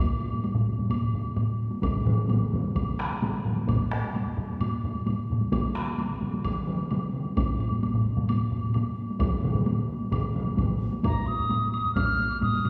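A wet concert-hall reverb with a 2.2-second decay surrounds this ceremonial, powerful Japanese traditional taiko piece, heard from further back in the room with a small-room ambience. Layered taiko ensembles drive it at 130 BPM in a straight 4/4: one heavy-stick group starts almost at once in a small room, and another sits up front in a live room. Two more taiko groups join at 1.8 seconds and thicken the pounding texture: one, struck with hard sticks, sounds distant in a large space, while the other plays with heavy sticks in a live room. A woody, vintage, band-limited woodblock clicks quietly underneath from the start. At 11 seconds the music turns to a new passage, and a moment later a pure, hollow wooden piccolo steps forward with a tongued, straight-toned melody between Bb5 and F6, closing this fragment cut from a longer piece.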